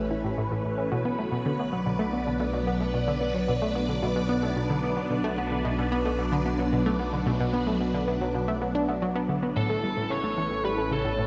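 A straight 4/4 pulse at 111 BPM drives this expansive, mysterious slice of ambient, sequencer-driven space music in B minor, where a round, nasal analog pluck riff with chorus, phaser and tape echo sits up front beside swirling, phased string-machine chords over an evolving, detuned analog drone bass, while a very quiet, breathy wind-like noise texture drifts in at 0.2 s and a biting, overdriven lead guitar enters at 9.6 s with a short melody, all bathed in a dreamy, reverb-soaked hall with a cassette-tape haze.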